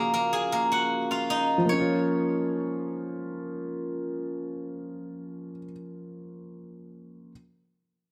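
A bright, silvery steel-string zither and a dark baby grand piano open this menacing, hard-hitting hip hop fragment together, both sitting up front in a short cut from a longer piece. Set in Bb minor at 154 BPM in 4/4 with a half-time feel, it rests on a Bb minor chord. The zither, played with fingerpicks, carries the melody between Bb3 and Ab5, its ringing acoustic tone trailed by delay until it stops at 4.0 s. Beneath it, the mellow, worn piano supplies smooth, vintage-toned accompaniment from Db3 to F4, sounding more softly than the zither and continuing alone until 7.3 s. A lush hall reverb with a 1.8-second decay, along with a hint of small-room ambience, surrounds the sound.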